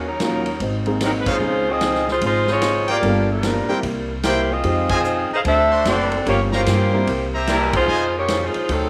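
A moderate plate reverb and a small-room ambience give this short big band swing cut its sense of space. In F minor at 148 BPM with a firm swing in 4/4, the mood is brassy and swinging. A tight, clear saxophone section carries the melody up front with light vibrato. A brilliant trumpet section adds stabs from 1.3 seconds, and the whole band hits accents along the way. Underneath, a dark, woody pizzicato upright bass anchors the harmony while a boxy archtop guitar with old strings and a warm, short-sustained grand piano comp in the background, the piano dropping out at 7.1 seconds. A natural-sounding drum kit with a punchy kick, medium-tuned snare, hi-hat and ride keeps time as the chords move from Ebm7 through Dbmaj9 and Gm7b5 to settle on Fm7.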